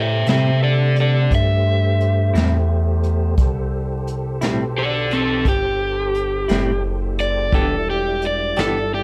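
An overdriven electric guitar solo, picked and up front with spring reverb, opens this brooding, mournful slow blues in 12/8 over clean tonewheel organ chords played through a slow rotary speaker with chorus vibrato and a mellow, detuned sawtooth synth bass, while from 0.3 seconds a dark, fingered semi-hollow guitar with tremolo and a small-room brush kit with a punchy kick join as the harmony moves from Am7 to Em7 in this short cut from a longer piece.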